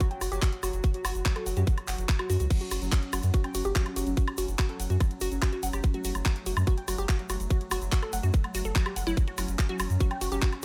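Hypnotic and psychedelic, this short cut from a longer psychedelic trance track rides a straight pulse from the very first beat. A tight, layered electronic kick drum sits up front, joined by a garage drum kit of crash and ride cymbals, handclaps, woodblock and warm hi-hats, both touched with studio reverb. A grainy egg shaker tucks into the background, while a round, deep analog bass with a fast attack enters at 0.2 seconds and holds a dark, sustained low end. Over this, a woody wave-folded pluck plays a riff with short, percussive notes, a filter sweep and a moving notch, its chorus and dub echo pumping against the kick. Beneath it, a mellow, detuned gated texture sustains chords that pulse in time, blurred by chorus and its own reverb. The overall sound is dry and close, keeping the groove punchy and trance-like.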